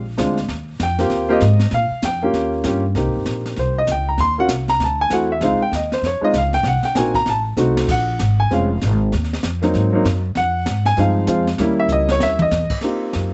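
Playful and warm, this short jazz piano trio excerpt swings briskly at 195 BPM in 4/4, settled in Ab major with a gently lowered tuning. The grand piano carries the melody as a solo from the start to 12.8 seconds, its natural, short-sustained tone sitting up front and touched by a slapback echo. Beneath it, the pizzicato upright bass plays close and woody, its steel strings giving the low line a firm presence. The brush kit enters at 0.2 seconds, airy and polished, with dark cymbals, a high-tuned snare and a boomy kick, and it adds brief fills around 7.6 and 11.9 seconds. Rich harmony moves through chords like a rootless Abmaj7, Dbmaj9, Adim7 and Eb7b9 before settling on Eb6. The recording is dry and close, with a soft-edged top end that keeps the sound mellow.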